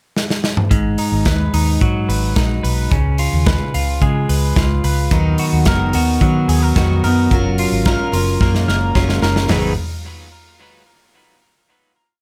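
Bittersweet and restless, this short, complete jangly indie pop piece in G# dorian moves at 109 BPM in a straight 4/4, opening with a drum fill on a pickup bar before a verse that cycles through G#m7, C#7, Bmaj7 and F#maj7 and comes to rest on a final G#m7 chord. An up-front studio kit drives a dance-floor indie beat with off-beat open hats and a tight kick, while a dark, foam-muted vintage bass plays a round, melodic line and a clean, compressed twelve-string electric guitar spins fingerpicked roll-pattern arpeggios. At 5.1 s a bright, full-bodied jumbo acoustic guitar joins with folk strumming in open chord shapes, and a second drum fill at 8.4 s leads into the final chord, all set in light reverb.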